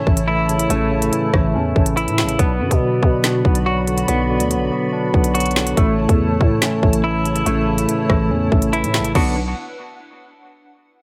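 An up-front drill drum kit anchors this tense, ominous hip hop piece in B minor at 142 BPM with a half-time feel. Its hard-clipped kick, woody snare and crisp hats are joined by crash cymbal, finger snaps and rim clicks over a growling, buzzy 808-style bass. A clean, fingered semi-hollow guitar plays compressed arpeggios through tremolo, delay and a low-pass filter, while a tine electric piano, heard through built-in speakers and also low-pass filtered, adds accompaniment, and a dark, flute-like pad holds chords with ensemble chorus and tremolo, all set in light reverb as the harmony moves between A and Bm.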